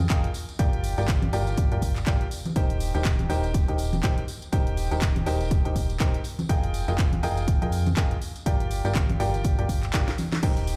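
A clear, woody upright piano riff carries this euphoric, feel-good piano house excerpt at 122 BPM in 4/4, with a 58% swing on the sixteenths, its short-sustain notes pumping against the sidechain and trailed by a digital delay as the harmony moves from Gm7 to Eb6, Fm11 and back to Gm7. Underneath, a round, dark FM bass with a fast, decaying attack also pumps to the sidechain, sitting between Eb1 and F2. A punchy, overdriven electronic kick drives the groove, joined by a layered house kit with a cracking snare, bright hats, handclaps and crash cymbal, both set in a small room ambience with overdrive. Soft-handed tambourine and congas add a band-limited, vintage acoustic color beneath, and a drum fill at 9.9 seconds leads into a very quiet, gritty tambourine and hi-hat entering at 10.4 seconds in a bright stone room. The whole mix sounds as if played on a big sound system in a bare room, wrapped in large studio reverb.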